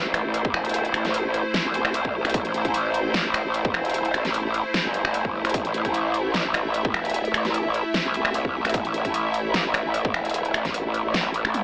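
Squeezed through a narrow, lo-fi AM radio tone with a light touch of reverb, this aggressive, chaotic slice of heavy wobble dubstep is cut from a longer piece and rides a half-time feel with a slight swing on the sixteenths. A growling, saturated bass sits up front from the very start, its wobbling formant-filtered sine core given a fast attack, compression, chorus and overdrive for a bright, sustained snarl in the low register. Above it, an evolving wavetable pad holds sustained chords, its detuned, morphing sine tones swelling in on a slow attack and trailing long releases, thickened by ensemble chorus and built-in reverb and pumped by sidechain compression. The dubstep drum kit, also up front, layers finger snaps, metallic hi-hats, toms and a huge snare, while a punchy electronic kick enters at 0.4 seconds and drops out at 10.7 seconds. Both drum parts carry a produced, tape-warm sheen that gives the relentless groove weight beneath the bass.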